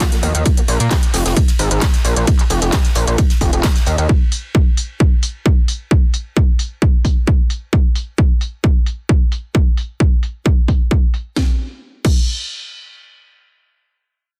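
A heavy, overdriven electronic kick drives this dark, industrial stretch of driving peak-time techno, sounding from the start alongside a layered techno kit with a cracking snare, smooth hats, handclaps and crash and, in the background, a gated 80s kit whose bright cymbals ring in an airy stone room until 4.0 s. A gritty, aggressive synth bass of sawtooth, sync and ring-modulated tones adds a resonant, plucked attack, tube saturation and sidechain pumping before dropping out at 4.1 s, while the kick and techno kit carry on into a new section at 11.4 s, all within a dense, heavily limited master.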